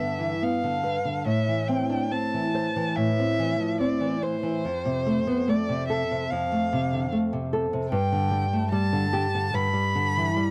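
Flowing in a relaxed, rubato 4/4, this short romantic duo, cut from a longer piece, moves serenely through G7, Am, F and G. A single bowed violin carries the melody up close with vibrato, portamento and a smooth, expressive top, while a dark, small-sounding nylon-string guitar fingerpicks the accompaniment, sitting a touch louder in the balance. The sound is dry and intimate, a close 1970s-style studio recording with a gentle trace of small-room ambience.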